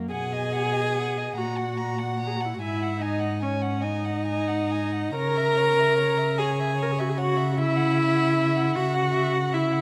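Serene and lyrical, this slow romantic string quartet passage in rubato 6/8 sets a pure, floating sul tasto violin melody over a warm second violin line with a smooth top, a rich, intimate viola accompaniment up front with light vibrato and an airy bow, and a dark, woody cello bass, all captured by close, detailed microphones in moderate scoring stage reverb.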